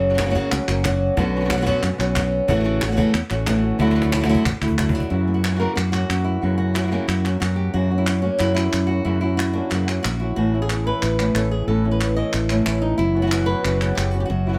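Flamenco at 183 BPM in a straight 4/4, intense and dramatic, cut from a longer piece and set in light reverb. A fingerpicked acoustic flamenco guitar carries the melody up front with finger squeak and plate reverb, while a second fingerpicked guitar with fresh strings adds softer stabs, and a fretless electric bass sits up front, direct and amped. Crisp palmas hand claps run nearly throughout, and a woody, compressed cajon played with soft hands stays in the background until it drops out after a fill ending at 5.1 seconds, as the harmony moves from F# through Bmadd9, A6 and Dadd9 to F#7.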